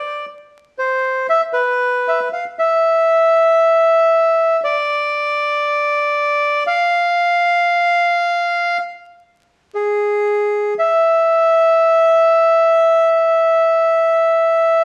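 Passionate and tense, this short tango passage, cut from a longer piece, is carried entirely by a solo bandoneon. Its tone is reedy, dark and smooth, sitting up front in the mix and moving within a compact range from G#4 to F5. The instrument is heard from 0.0 to 14.8 seconds, with a brief opening phrase giving way to a new section at 2.6 seconds that runs to the close. A stone room wraps the sound in a rich, one-second reverb, lending it the feel of musicians playing live together in a single space. A layer of vinyl crackle adds an aged, intimate grain to the recording.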